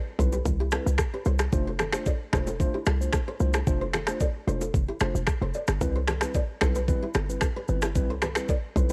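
A straight 4/4 afrobeats groove at 112 BPM rides on an up-front, electronic afro-pop drum kit of knocking kick, rim click, finger snaps and shaker with tape coloring, joined by a punchy, tight 808-style bass with a fast attack and a sine body, plus very quiet, ringing bongos and congas heard close and dry. In C major, a mellow, clean tine electric piano supports the Cmaj7 and F6 chords through cassette tape, while a fingerpicked, classical nylon-string guitar plays a riff treated with cassette tape and analog delay. Joyful and romantic, this home cassette recording has little reverb and is cut from a longer piece, with every part sounding from 0.2 to 8.9 s.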